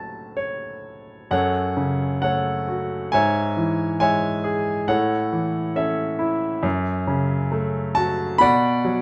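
Classical lyrical solo piano in F# minor at a relaxed 68 BPM with rubato feel, where a clear, natural-sounding concert grand with deep bass sits up front in a moderate studio reverb and dark production, opening with a brief fill before settling into a peaceful passage that moves through F#m, C#m/G#, A, F#m and Bm in this short fragment of a longer piece.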